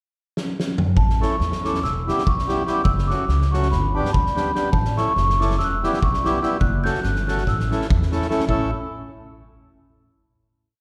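Heard from further back in a concert hall with a moderate reverb, this short, complete piece of festive, virtuosic Balkan wedding-band folk has a roomy, spacious sound. A loose indie drum kit opens the pickup bar at 0.4 seconds with a fill on kick, snare and toms. Its fat snare, tight kick and rolled-off top sit up front in a two-stick pattern that drives the 9/8 metre. At 1.0 seconds a large celesta takes the motif-based melody in period phrases, its bell-like, delicate tone ringing high. Beneath it, a pizzicato upright bass with woody, thumpy gut strings plays roots and fifths on the main beats. A reedy, hollow accordion sits forward in the mix from 1.2 seconds with off-beat triad chords, and the whole band comes to rest on a final chord at 8.5 seconds.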